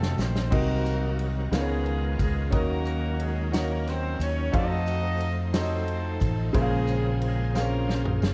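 A drum fill on a natural, small-room kit with a fat snare and punchy kick opens this slow gospel excerpt in Bb minor. It is a fervent, soulful 6/8 passage at 60 BPM, where a mellow, distant horn section carries the melody in tight octave doubling with light vibrato over clear baby grand piano accompaniment. A round, dark fingered electric bass sits up front, while a bright, lightly overdriven tonewheel organ holds sustained chords in the background through a slow rotary speaker and chorus vibrato, and a jingly tambourine joins at 0.2 s. The harmony moves from F7b9 through Cm7b5, Db13 and Ebm7, back to F7b9 and on to Bbm9, with another drum fill at 7.6 s, all set in light reverb.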